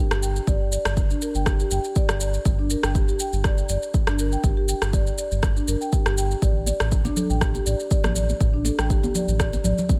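Dry and close with little reverb, this short cut of spiritual, earthy afro house moves in a lightly swung 4/4. A woody, mellow marimba played with soft mallets spins arpeggios through digital delay and sidechain pumping, while a round, dark analog bass pumps underneath and a deep, tape-warm electronic kick joins at 0.5 seconds beside a layered rim click and shaker re-recorded in a small room. Bright, saturated acoustic congas arrive at 6.7 seconds, just after the harmony shifts from G5 to A7sus4.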